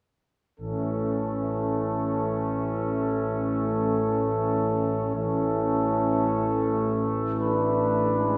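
A classical, hymn-like passage for brass band, cut from a longer piece, unfolds in free time with a lyrical, warm mood. From 0.6 s to 8.4 s all five parts sound together: a dark, tight trumpet section carries the melody, while a mellow solo flugelhorn adds a smooth second line beneath it. A clear trombone section with a vintage colour and a mellow euphonium set in the background fill out the accompaniment. A dark solo tuba sits up front on the bass, its tone carrying a light vibrato. The harmony rests on A before moving to E7 over A at 7.4 s, all heard from further back in a concert hall with a generous, wet reverb.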